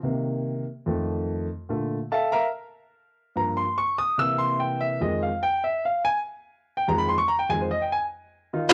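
A grand piano opens this brief jazz fragment on its own, playing a solo passage from 0.0 to 8.3 seconds at a brisk 145 BPM in a straight 4/4 feel. The mood is fiery yet sultry, with the piano covering a span from F2 up to E6 as it moves through Cm7, F7, Bbmaj7#11, Gm7b5, C7 and finally Fm7. Its tone is warm and natural, and it sits up front in the mix. A short, wet booth ambience surrounds the instrument, captured in a home recording on cassette. The piece is cut from a longer performance, so the passage ends mid-flow.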